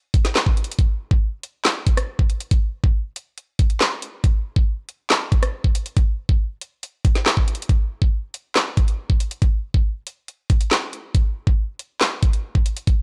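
Ominous and tense, this hip hop piece moves at 139 BPM in 4/4 with a half-time feel, carried entirely by an electronic drill drum kit that enters at 0.1 s and runs to the end at 13.0 s. The up-front kit pairs a knocking kick and woody snare with metallic hi-hats, rim clicks and handclaps, all coloured by vintage 12-bit sampler crunch. The sound is dry and rough, with a cassette-tape character, and the arrangement shifts into a new section at 7.7 s.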